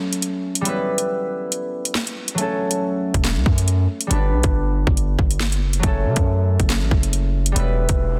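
Menacing, ominous drill hip hop in a half-time feel, cut from a longer piece. A fingerpicked concert harp carries the accompaniment, its acoustic, ringing tone dulled by a low-pass filter as chords move among F# minor, E minor and G. The electronic drill kit sits up front with a hard-clipped kick, sharp snare, metallic hi-hats, handclaps and a tape-warm finish, and the kick briefly cuts out at 2.4 seconds. At 3.1 seconds a heavy, aggressive 808-style bass arrives, a saturated sine with a noise layer, fast attack and decaying tail, pushed hard with distortion. A faint electronic riser appears in the background at 8.0 seconds, and the whole mix is dry, dense and heavily limited in a modern style.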